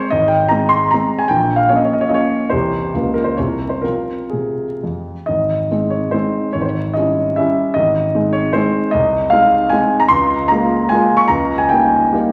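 Wistful and nostalgic, this brief classical piece is a romantic dance in triple time for solo piano, built on dotted rhythms and played with a free, elastic rubato that lets the tempo drift between 113 and 163 BPM. A concert grand carries everything alone, its tone warm with a deep bass and short sustain, set up front in the sound. It opens in F minor, moving through chords like Bb minor and C before settling on F minor, then at 5.3 seconds brightens into Ab major for a second section that leans on richer harmonies such as Eb7b9 over Ab and Bbm7 over Db. The piano sits in a wet recital hall reverb, and a vinyl crackle adds an old-record patina that deepens the sense of memory. Cut from a longer work, the passage ends on an Eb7 over Db, leaving the phrase hanging at 12.3 seconds.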